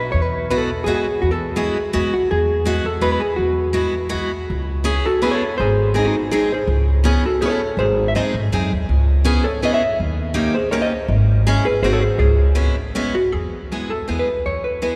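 This charming, whirling musette waltz opens on a dark, clean vintage hollow-body jazz guitar carrying the melody in three-four time, joined almost at once by a pizzicato upright bass with a woody, growly tone from its steel strings. At 0.5 seconds a picked steel-string acoustic guitar enters in accompaniment, its dreadnought body giving a bright, full-bodied ring beneath the lead. All three parts sit up front, with the electric guitar and bass at equal level and the acoustic guitar slightly behind them. After an opening phrase on an Eadd9 chord, the music turns to a minor-leaning middle stretch at 4.5 seconds, circling through C#m7, G#, D#7 and G#7 before settling back on E at 13.3 seconds. The recording is bathed in a long cathedral reverb from a church or concert hall, and the passage is cut from a longer piece.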